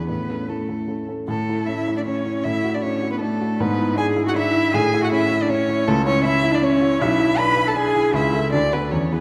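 A muted violin carries the melody up front, its veiled con sordino tone coloured by vibrato and portamento, while a close, dark-toned cello adds a second line in this graceful, cheerful fragment of a quick classical-period piano trio movement in three-four time. A mellow baby grand piano supplies the accompaniment with short sustain, also up front, as the rubato phrasing moves into a new section at 1.3 seconds and reaches a D chord at 8.5 seconds. A wet concert hall reverb gives the trio a generous sense of space.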